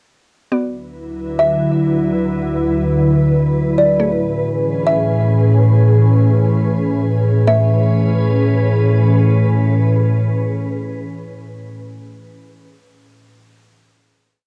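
Atmospheric cloud-rap hip hop, blissful and floating in free time, built on a glassy FM pad of sustained chords with slow attack and long release, sitting up front in ensemble chorus and its own reverb. A round, detuned mallet-like synth pluck adds chorused texture from 0.5 s, and a woody kalimba plays a sparse looping melody from 1.4 s, repeated like a sampled loop and trailed by tape echo. Cassette tape colours all three parts in a wet small room with a home-recorded feel, and the breakdown gives way to a final chord at 7.5 s.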